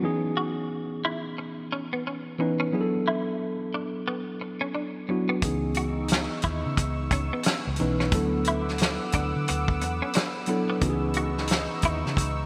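Bathed in a lush hall reverb with a bright 1980s-style digital sheen, this smooth, introspective neo-soul R&B excerpt opens on a worn, slightly out-of-tune tine electric piano up front and a compressed, picked clean electric guitar with ensemble chorus, before a thick, detuned sawtooth unison pad with chorus, a dark, round, foam-muted fingered bass and a dry soul drum kit with a fat snare and tight kick all enter at 5.4 seconds over swung sixteenths.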